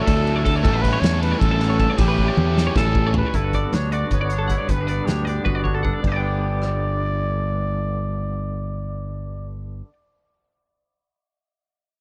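Math rock and Midwest emo with a bright, playful mood at a brisk 311 BPM in 7/8 and G Lydian, this dry fragment of a longer piece sets a raspy, growling trumpet melody over bright, compressed twelve-string electric guitar arpeggios, a biting, double-tracked overdriven guitar riff that drops out at 3.3 seconds as a twangy, tremolo-laced guitar takes up the accompaniment, an up-front overdriven fingered bass, and a loose indie drum kit with dark cymbals and a punchy kick that plays two fills before falling silent at 6.7 seconds.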